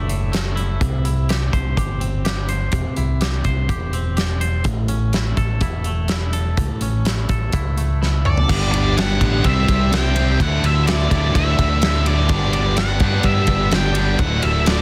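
Anthemic and cathartic, this quiet-loud alternative rock fragment moves at 125 BPM in a straight 4/4. It opens on a twangy, scooped clean electric guitar picking tremolo-washed arpeggios over a round, dark fingered bass and a big-room acoustic drum kit with a fat snare and a punchy, softly clipped kick, moving through Dadd9, C and A. A drum fill at 8.0 seconds launches the loud section at 8.5 seconds, where the arpeggiated guitar stops and a wall of picked guitars takes over: two bright distorted riff guitars, one with distortion and one with overdrive, plus a sludgy, double-tracked overdriven guitar sitting low in the mix. An octave-fuzz lead guitar carries the melody high above them from 8.3 seconds, its dark fuzz tone trailed by digital delay. Underneath, a very quiet, silky string machine holds slow-attack chords with an ensemble chorus shimmer as the harmony cycles through Gadd9, C6 and Dadd9. 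The sound is dry, dense and heavily limited, with the bass and drums up front.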